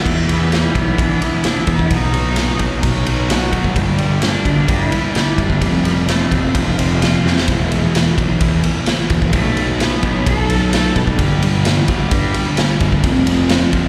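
Heard live through a venue's PA with a recital-hall reverb, this dark, brooding fragment of quiet-loud alternative rock carries a distant, biting bowed cello melody with vibrato and tape echo over a gritty, punchy garage drum kit up front, a growly overdriven picked bass, a double-tracked fuzz guitar riff with slapback echo in the background, and twangy, slightly broken-up guitar arpeggios with spring reverb that stop at 7.5 seconds, just after a drum fill at 7.2 seconds.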